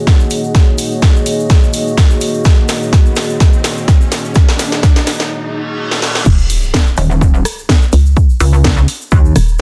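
An overdriven, punchy electronic kick drives this gritty, aggressive bass house cut at 126 BPM in Eb minor, backed by a swung house kit of cracking snare, rim click, hi-hat and crash, plus a grainy tube shaker in the background. Through the build-up, a detuned, wave-folded analog pad and a deep ambient pad with built-in reverb pump under sidechain with lush chorus, while a riser and reverse cymbal lead into the drop at 6.3 seconds, where an impact lands. There a hollow, bouncy FM bass with tube saturation enters, joined at 7.0 seconds by a heavy, pulsing pluck wobble bass, inside a dense, heavily limited, dry mix.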